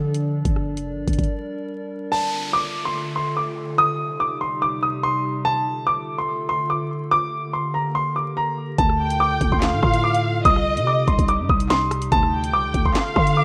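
A menacing half-time drill groove at 144 BPM in D phrygian opens with a knocking kick, sharp snare, bright hats, handclaps and rim clicks over a buzzy, growling 808-style bass, then both drop out at 1.3 s under a nostalgic, detuned, warbling pad that sustains lo-fi chords with chorus throughout this ominous fragment of a longer piece. At 2.1 s a dark, worn concert grand piano enters up front with a high melody, audible action noise, a low-pass filter and delay, alongside a brief electronic downlifter. When the drums and bass return at 8.8 s, a lush studio violin section soon adds an expressive second line with vibrato, portamento and delay, all set in a rough home demo mix with light digital ambience and vinyl crackle.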